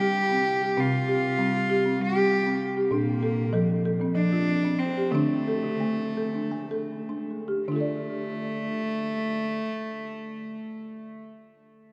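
Moving in a straight 7/8 counted in eighths at 148-196 BPM, this meditative world piece for tuned percussion unfolds in D minor with a hypnotic, gentle mood, tuned slightly high at A4 = 441 Hz. A folk marimba struck with medium mallets carries the arpeggios from 0.0 to 11.4 seconds, its hardwood bars giving a woody, rustic, boxy tone that sits up front and is touched by tape echo. Meanwhile, a single bowed cello plays the melody from A3 to G4, its gut-string, period-style sound both rich and reedy, also placed close to the listener. The tempo slows between 2.9 and 7.7 seconds as the harmony moves from C5 to Bb and D5, then settles on D minor for the closing section, which begins at 7.7 seconds. A long cathedral reverb, with a decay of 6.0 seconds, suspends the whole excerpt in a vast, echoing space, and the recording is cut from a longer piece.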